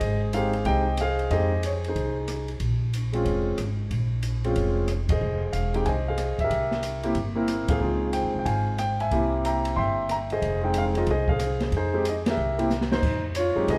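Moody and cool, this jazz piano trio excerpt swings at 184 BPM in 4/4 in F minor, moving through minor seventh chords and dominant turns with a brief visit to Dbmaj7. A concert grand carries the melody, ranging from Ab3 to C6. Its tone is intimate and polished, with long sustain and audible action noise, and it is placed up front. Beneath it the upright bass is plucked on gut strings and sounds woody and thumpy as it holds down the low end. The drum kit sets ride, hi-hat, crash, snare, rim click and kick against dark cymbals and a boomy kick, with band accents at 5.0, 7.7 and 12.2 seconds and a short drum fill at 12.7 seconds before the chords settle back on Fm7. A large studio reverb gives the trio a wet sound, heard from further back in the room.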